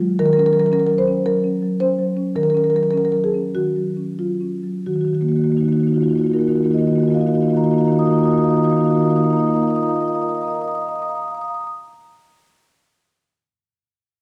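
Loosely rubato in 4/4 and slowing through the first 4.9 seconds, this reflective, flowing excerpt from a contemporary classical piece for solo marimba moves from a minor-seventh chord to an added-ninth chord at 4.9 seconds. Played with soft mallets on padauk bars across a three-octave span, the marimba sounds woody, mellow and round, sitting up front in a wet recital hall reverb.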